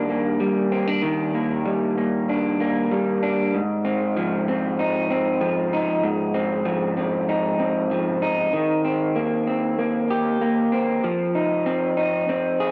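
Dreamy and sunny, this short indie pop fragment from a longer piece moves at 96 BPM in a straight 4/4, with a lone electric guitar playing through a small old amp from start to finish. The fingered guitar has a dark, slightly broken-up, lo-fi tone, compressed and up front, and is soaked in lush chorus, warbly pitch drift, analog delay and cassette-tape character, set in light reverb on a home cassette recording. Major-seventh and sixth chords drift by before the music settles into Eb major at 8.5 seconds for a brief closing passage.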